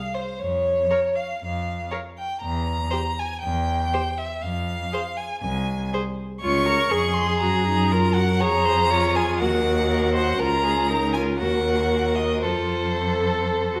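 A wet recital-hall reverb surrounds this quick classical-period string quartet movement in F minor, which moves at 120 BPM in 4/4 with a rubato feel and a restless, stormy mood. A single bowed violin opens with the melody high in its range, rich and smoothly vibrato-laden, placed up front yet carrying a faintly distant quality. The cello enters at 0.4 s with the bass line, also forward in the balance, its soft attacks, portamento and expressive vibrato giving the low end a singing character. At 0.9 s a second violin joins with an even, smooth-topped second line, alongside a viola whose warm, steady accompaniment sits slightly lower in the mix. The harmony shifts through Db, Gb and Ebm before arriving on an F major chord as this section, cut from a longer piece, breaks off.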